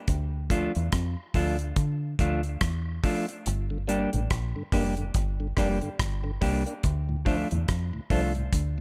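A relaxed 71 BPM groove in 4/4 sways on swung sixteenths, setting up a meditative, hypnotic stretch of roots reggae in G dorian, cut from a longer piece. A damped 70s drum kit sits up front with a tight kick, hi-hat and rim click, its acoustic sound dry, airy and polished, and the kick drops out briefly from 3.5 to 4.3 seconds. Alongside it, a deep dub fingered electric bass, also up front, carries a round, foam-muted tone, direct and amped, anchoring the low end. A mellow electric guitar, dark, clean and fingered, adds accompaniment coloured by tape echo. From 3.7 seconds a tonewheel organ joins in the background, fat and lightly overdriven with audible key click and a slow rotary speaker. The harmony moves from Dm to Gm and back to Dm, all set in a light small-room reverb.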